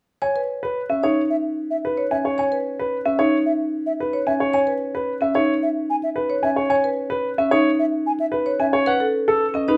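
An up-front grand piano carries the warm melody in this hypnotic, propulsive excerpt of minimalist classical pattern music, moving at 111 BPM in a straight 4/4, while a close marimba played with medium mallets runs arpeggios beneath it from 0.2 seconds onward. At 1.3 seconds a mellow, airy concert flute joins with its own arpeggios in a hollow, straight tone, playing until 8.7 seconds. A moderate large-studio reverb surrounds the parts, and the pattern lands on a B9 chord at 8.9 seconds.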